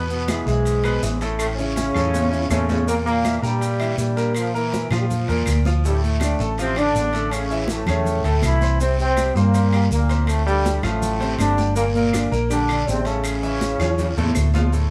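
A live band in one room with light reverb drives this fiery, passionate salsa at 162 BPM, part of a longer piece. The tight trombone section carries the melody up front with light vibrato, over a dark, round hollow-body electric bass and an open concert grand piano with deep lows, as the harmony moves through E, A, Edim, Dm, Csus2 and Gm. In the background sit ringing high-tuned congas, distant metal-shell timbales, woody claves and grainy maracas, joined by a raspy, saturated guiro, and drum fills arrive at 2.0 and 13.8 seconds.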